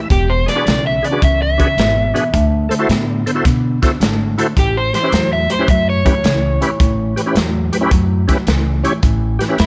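Heard in a studio room with a generous wash of reverb, the recording places the crunchy breakbeat kit and the semi-hollow lead guitar up front. This gritty, swaggering electric blues shuffle, cut from a longer piece, rolls in a swung 4/4 over a move from E7 to D7 to A7. The saturated, mid-forward drums pair a tight kick and medium-tuned snare with hi-hat under a rolled-off top, while a woody, growly upright bass plays pizzicato beneath. A dark, clean electric guitar, fingered and steeped in lush chorus, carries a low riff, and a full, thick tonewheel organ with a driven edge fills in accompaniment through chorus vibrato and a slow rotary speaker. Above them the hollow-body guitar, picked and overdriven, sings the melody from 0.1 s until the cut at 9.7 s.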